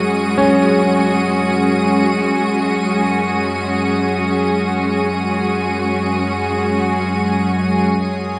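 Drenched in a huge, cavernous reverb, this short cut from a longer dark ambient drone piece feels ominous and suspended. A tense, wave-folded, bowed-like drone holds sustained tones beneath a bright, intense cello section playing sustained chords from the start, while an icy, crystalline glass pad with chorus sustains above them. At 0.4 seconds a smooth, vintage grand piano enters with arpeggios on a single note through tape echo.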